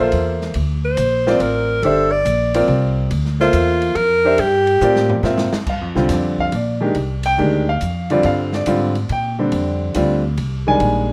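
Spiritual and searching, this modal jazz excerpt swings in three, with a breathy alto saxophone carrying the melody up front in a subtone full of vibrato and scooped notes until it drops out at 5.3 seconds. A vintage-toned upright piano with short sustain and a woody pizzicato upright bass on steel strings accompany throughout, while an open jazz drum kit, dark and smooth with a boomy kick, plays a fill from 4.8 seconds into the change of harmony at 5.7 seconds. The rough home demo mix sits in a moderate studio reverb.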